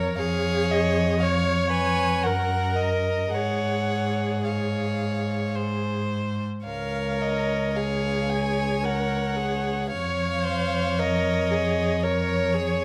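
A string quartet opens together at 0.0 seconds in this serene, slow romantic movement in Db major, set in 3/4 at 55 BPM with uneven, rubato beats that give the phrases a breathing, unhurried feel. The first violin carries the melody with a rich, smooth tone, while the second violin plays a clear, close-sounding second line beneath it. The viola supplies accompaniment with a focused, intimate sound, and the cello anchors the bass with a full, even tone that sits up front yet carries a slightly distant quality. Each player bows with vibrato, and a light reverb gives the ensemble a gentle sense of space. The harmony moves from Db7/F through Gb and Db/Ab, settling on Db/F near 9.9 seconds before this warm excerpt from a longer piece ends at 12.8 seconds.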